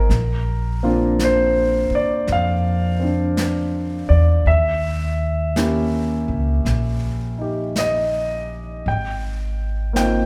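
A slow swung 4/4 pulse at 55 BPM carries this melancholic, wistful jazz ballad excerpt, where an intimate concert grand with audible action noise and long sustain moves through Bbadd9, Eb7b9 and Ab69 over a woody pizzicato upright bass, both up front, while an airy brushed drum kit sits softly behind them in a recital hall's 1.5-second reverb.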